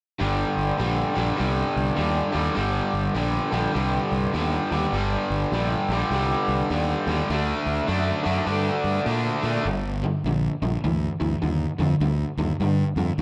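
A crunchy, bright overdriven guitar leads this heavy, brooding rock passage, its double-tracked, picked riff sitting up front over a G minor chord that moves to D at 7.3 seconds before settling on a G power chord at 9.7 seconds. Beneath it, a dark, round fingered electric bass with fuzz and overdrive plays the low end with a swung rock feel. The music sits in a big, arena-like space with a long, wet reverb, and it is cut from a longer piece.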